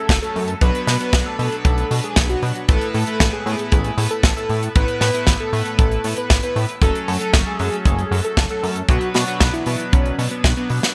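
Italo disco at 116 BPM in a sunny, romantic mood, cut from a longer piece, where a thick, detuned sawtooth unison lead with vibrato and delay carries the melody over glossy, chorused polysynth stabs roughened by 12-bit sampler grit and digital delay, a nasal, pulse-width-modulated synth bass, an up-front, tight acoustic kick and a dry, polished funk kit of hi-hat and medium-tuned snare that closes on a drum fill at 10.4 seconds, the whole mix sitting in light small-room reverb with bright 1980s-style digital production over a progression through F#m, Bm and Asus2.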